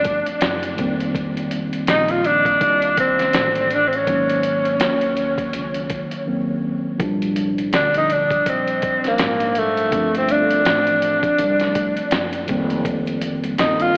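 Swung sixteenths in a relaxed 4/4 give this mellow, cool jazz-hop cut its lazy hip hop lean. A breathy tenor saxophone carries the melody up front with subtone, vibrato, soft attacks and scooped notes, its whispered, intimate tone touched by analog delay. Beneath it, a clean tine electric piano heard through its built-in speakers comps on drifting sus4 ninth chords, while a woody pizzicato upright bass holds the low end. A gritty, compressed sampler-style drum kit with a thumpy kick and fat snare keeps the groove, and the phrase repeats after a brief silent gap from 6.3 to 7.0 seconds. At 12.8 seconds, a very quiet, bright egg shaker and congas slip in close and dry, and the whole mix sits soaked in huge ambient reverb with vinyl crackle and an AM radio haze, like a dreamy fragment lifted from a longer piece.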